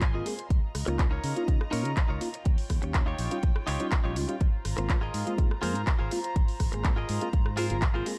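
The sound is dark and dry, with little reverb and a punchy electronic kick sitting up front in a small room. This short excerpt of filtered disco house moves at 123 BPM in a straight 4/4 in Ab major, funky and feel-good, with the chords moving through Ab69, Db69 and Eb9 before returning to Ab69 at 4.4 seconds. A picked, twangy clean electric guitar opens with a brief fill in the first 0.5 seconds and carries a bright, compressed riff, while a fingered electric bass holds down the low end with a warm, amped tone. A house kit adds handclaps, rim clicks and bright hats that pump with the sidechain. A reedy, worn electric piano, slightly out of tune and colored by phaser, plays accompaniment from 0.1 seconds, and a nasal, gut-string studio string section sustains chords in the background, both breathing with the same sidechain pumping.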